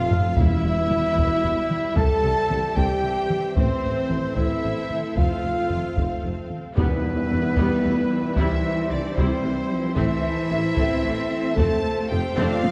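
Dark and epic, this cinematic orchestral film-score passage moves at 75 BPM in a straight 6/8 in E phrygian, cycling Em, C, Am and F over close and dry taiko drums played with heavy sticks, with hard-mallet timpani strikes at 0.4 and 6.8 seconds. Vibrato-laden violin sections carry the melody and a second line above a clear, intense viola section, lush bowed cellos, very quiet double basses, a punchy tuba, a rich string pad, mellow French horns, very quiet dark trombones and distant trumpet stabs. At 6.8 seconds a band accent opens the second half, where an airy silver flute joins the second line and a very quiet tam-tam sounds until 8.9 seconds, all set in a wet concert hall with a dark production.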